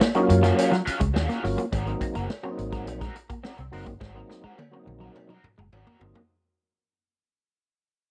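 Driving and cool, this brief funk clip at 105 BPM moves from Ebm9 to Ab9 as a gritty overdriven tonewheel organ stabs up front with a slow rotary speaker, chorus vibrato and slapback echo, over a round, foam-muted fingered bass; a lo-fi garage guitar with wah and overdrive and a clean, compressed semi-hollow guitar riff sit beneath, while a big-room drum kit with a punchy kick and a distant cowbell drive the groove, capped by a drum fill from 4.0 seconds as the whole dry, close 1970s-style recording fades out.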